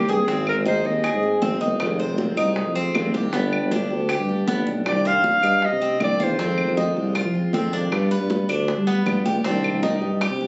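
A clear, jazz-style clarinet with light vibrato and a soft subtone carries the melody up front, stating a phrase at the start and returning at 4.9 seconds in this sultry, nostalgic excerpt of Cuban son and guajira at 157 BPM in C minor. A punchy, close-miked tuba holds the bass beneath a bright, metallic tres picking double-strung arpeggios and a full-bodied fingerpicked steel-string dreadnought guitar set in the background, while round, low-tuned bongos, thin, high-tuned congas struck with hard hands, and woody claves fill out the percussion. The phone recording of the room carries club reverb and compression, with its top end capped at 7.9 kHz, over chords that move from Ab through Fm7 and G to Cmadd9.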